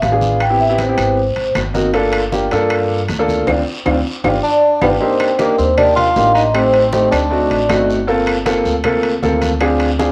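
A home cassette recording with light reverb and a small room ambience frames this fiery, sultry excerpt of Afro-Cuban jazz in G minor at 156 BPM, where a clear, up-front baby grand piano comps through rich minor-ninth and altered chords over a dark, thumpy gut-string upright bass played pizzicato. Ringing metal-shell timbales, low-tuned congas struck with hard hands, woody saturated claves and a raspy, distant guiro build a busy percussion bed, with a drum fill and band accent arriving at 3.5 seconds. A mellow soft-mallet vibraphone with slow motor vibrato and a cassette-tape tint carries the melody in two phrases, and when it returns at 4.4 seconds a breathy, close-miked tenor saxophone with scooped notes and light vibrato enters alongside it, playing a second line beneath it.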